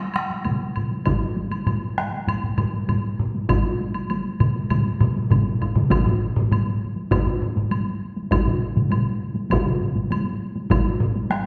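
Japanese traditional taiko drum ensemble music in a straight 4/4, ceremonial and driving, cut from a longer piece and heard in the reverberant space of a recital hall. Several taiko ensemble parts struck with heavy sticks form a thick percussive wall, one of them up front with a vintage, band-limited tone. From 1.1 s a solo taiko part with hard sticks sits close and prominent, while a woody, dry woodblock stays low in the mix throughout.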